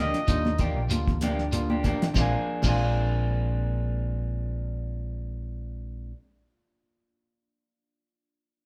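Afrobeat at 96 BPM in 4/4 with a light sixteenth-note swing, this short cut from a longer piece feels driving and hypnotic, centered on Bb mixolydian and moving from Ebmaj9 to Bb7 at 2.2 seconds. A breathy, whispered trumpet sits up front for a brief intimate phrase on Eb5 that ends by 0.6 seconds, while a fingered electric bass, direct and up front, anchors the low end between Bb1 and Eb2. In the background a bright, ringing concert harp plays fingerpicked arpeggios, and a clean, picked electric guitar with spring reverb adds stabs throughout. An overdriven tine electric piano, barky and gritty through a combo amp, supplies accompaniment from 0.3 seconds. The cloth-damped drum kit is dry and dark with a fat snare, tight kick, dark cymbals and a rolled-off top, joined by grainy shekere and thick-skinned, high-tuned congas, all of which stop at 2.8 seconds. The band plays live in one room with a moderate studio reverb.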